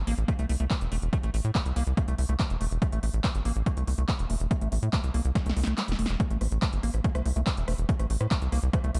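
Dark, dry production frames this hypnotic psychedelic trance fragment, where a tight, punchy sawtooth sequencer bass drives up front beneath an overdriven electronic kick, while a squelchy, resonant acid bass riff moves through phaser, sidechain pumping and dub echo above a crisp, overdriven dance kit of handclaps, hi-hat, rim click and snare, and after a drum fill at 5.4 seconds the kick drops out at 5.8 before the drop lands at 6.2 seconds.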